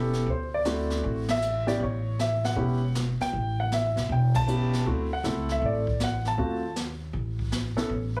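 A moderate club reverb and small room ambience surround this short cut from a longer piece, and heavy multiband compression gives it a squeezed, radio-like sound. It is a relaxed, swinging jazz piano trio in 4/4 at 157 BPM, with a 66% swing on the eighth notes. A natural, up-front baby grand carries the melody between A3 and A5, while a woody pizzicato upright bass with steel strings holds the low end, close and present. The brushed drum kit enters at 0.1 seconds and sits further back, with dark cymbals on ride and hi-hat, a medium-tuned snare and a boomy kick. The band hits accents together at 1.2 and 4.3 seconds over harmony moving from D7 to A7, back to D7, and then to a D# chord with a flattened fifth.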